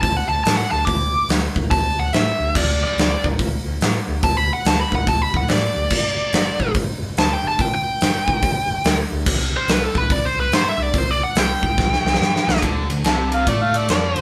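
Driving and swaggering, this short cut from a longer blues rock and southern rock power-trio piece moves at 143 BPM in 4/4 with a swung eighth-note feel, sitting in D mixolydian with the band playing live together in a moderately ambient studio room. A dark, distorted lead guitar with slapback echo takes a bluesy picked solo up front from the start until 12.6 seconds, moving over D5, G5 and C5 power chords. Underneath, an overdriven, growly picked electric bass adds bright punch, while a big acoustic rock kit sounds smooth and roomy, with a punchy kick, medium-tuned snare, hi-hat, ride and crash, and a drum fill leading into the next section. At 12.6 seconds a bright, double-tracked cranked stack guitar enters with an overdriven riff as the harmony returns to D5. An amplified, gritty harmonica then joins up front at 13.1 seconds, playing a jazz-style melody with light vibrato, soft attacks, scooped notes and tongue slaps.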